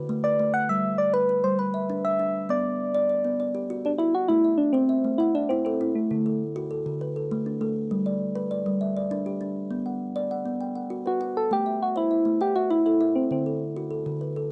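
A steady 12/8 mbira-style interlocking cycle drives this hypnotic, trance-like southern African traditional excerpt, where a woody, ringing kalimba plucks mellow arpeggios throughout while a round, keys-like FM synth lead with chorus and vibrato carries the melody, falling away at 6.4 seconds and returning at 11.1 seconds, all captured in a dry, close studio sound.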